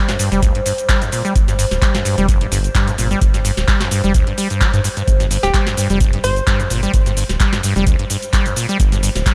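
Trippy and raw, this acid house excerpt runs at 129 BPM in G minor with a lightly swung 4/4 groove, built on a deep, rubbery acid bass riff that sits up front with overdrive, resonant filter sweeps and dub echo, joined by a round analog bass riding sidechain pumping beneath it. A deep, tape-warm electronic kick and a booming analog drum machine with crisp snare, metallic hats, handclaps and cabasa drive the beat, while a warbling, nostalgic tape-like pad holds sustained chords through chorus, phaser and pumping. At 5.4 seconds a hollow, bouncy square pluck briefly enters with chorus and dub echo, all set in a digital ambience.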